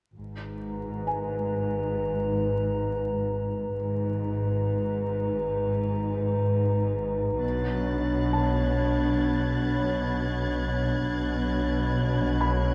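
A warbling, detuned tape-like pad holds dark sustained chords up front in this ominous, uneasy suspense-score excerpt, over bowed cello and double bass sections with expressive vibrato, while a soft felt-muted upright piano murmurs in the background from 1.1 s and a focused violin section joins high above at 7.4 s as the harmony shifts from G#madd9 to Bmadd9, all set in a moderate scoring-stage reverb with vinyl crackle.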